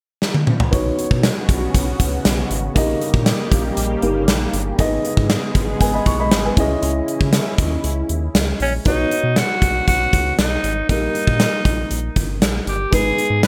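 1980s-style pop in B major at 118 BPM, romantic and uplifting, opening with a gated-reverb drum fill before an up-front kit with a punchy kick, dark mellow grand piano, round analog bass and a lush, detuned pad with chorus and phaser carry chords from Badd9 through G#m and C#madd9, until the pad stops near 8.8 seconds and a breathy, raspy tenor saxophone takes the melody from 8.6 seconds in a small, lightly reverberant room.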